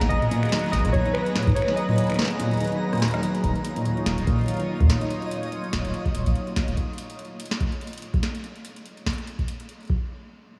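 IDM in Eb minor at 144 BPM, this glitchy, intricate passage is cut from a longer piece and moves with a light swing on the sixteenths, drifting from Abm9 to Ebm9 at 3.4 seconds. A detuned sawtooth pad holds smooth, bright sustained chords with chorus, while a round sine sub bass sits deep and mellow beneath it, and a felt-muted upright piano plays dark, intimate arpeggios through a low-pass filter and diffuse ambient delay. Warbling lo-fi synth keys carry a short, nostalgic melody with chorus and delay, and a twinkling granular texture shimmers faintly in the background with its own reverb. The booming analog drum machine mixes finger snaps, metallic hats, rim clicks, a crisp snare and toms with an echoing delay, joined by a deep electronic kick, both re-recorded in a large room. A drum fill leads into the second section, where a filter sweep moves over the felt piano until it stops at 5.1 seconds, and the drums carry on alone once the pad, bass and texture fall away. 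The whole mix is dreamy and soaked in a huge reverb.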